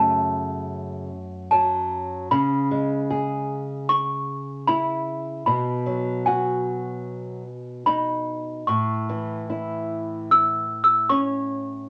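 In a straight 4/4 at 76 BPM, this sleepy, gentle children's lullaby, cut from a longer piece, sets a sweet, bell-like small celesta melody with a cassette tape color, up front and ringing between G#5 and E6, over a dark, fingerpicked nylon-string guitar accompaniment that moves through F#m, C#m, B and A, all softened by light reverb and the homespun feel of a cassette home recording.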